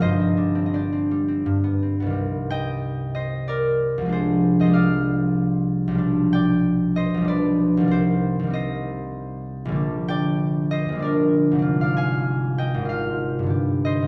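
A ringing, fingerpicked concert harp carries this gentle, wistful classical fragment in C minor, moving in a rubato 3/4 at roughly 83-98 BPM across a range from G1 to Ab5. After a brief suspended opening that settles onto G, the music shifts at 2.2 seconds into a longer passage that moves through Cm, Dm7b5/C, G7/B, Gm/Bb and Fm/Ab before resting on G at 13.5 seconds. The harp sits up front, bathed in a recital hall's lush reverb heard from further back in the room.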